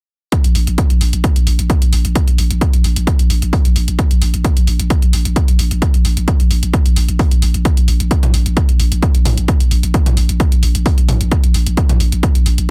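A heavy, tape-warm electronic kick sits up front and a techno kit of hats and toms re-recorded in a small room enters with it to open this dry, hypnotic excerpt of driving peak-time techno, joined a moment later by a growling, buzzy 808-style bass whose low-pass filter and sidechain pumping keep the straight 4/4 groove relentless.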